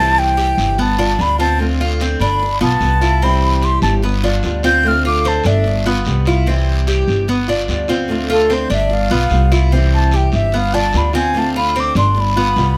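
Relaxed and danceable, this excerpt from a longer Cuban son and guajira piece moves at 148 BPM in a straight 4/4, cycling through C, G7 and Dm7 as an airy, expressive concert flute carries the melody with vibrato and tongued notes, pausing between 5.9 and 8.3 seconds. Beneath it, a bright, fingerpicked flamenco guitar accompanies, a metallic Cuban tres with double strings picks arpeggios, and a woody, growly pizzicato upright bass sits up front. A raspy, band-limited guiro joins at 0.4 seconds, and the recording captures everything with close, detailed microphones and light reverb.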